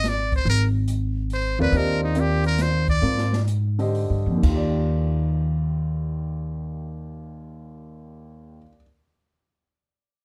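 A swung 3/4 pulse at 121-142 BPM opens this modal jazz excerpt in Eb major, and the tempo soon slows down. The mood is open and hypnotic. A trumpet with a metal mute carries the melody as a buzzy, breathy solo with a soft attack, sitting up front until 3.4 seconds. A woody pizzicato upright bass with steel strings holds the low end until 8.6 seconds. The acoustic jazz drum kit adds dark cymbals, a medium-tuned snare and a boomy kick until 4.6 seconds. A concert grand piano with deep bass, long sustain and audible action noise enters at 1.6 seconds as intimate accompaniment, as the harmony moves from Abmaj9 to Ebmaj9 in a dark, warm production with little reverb.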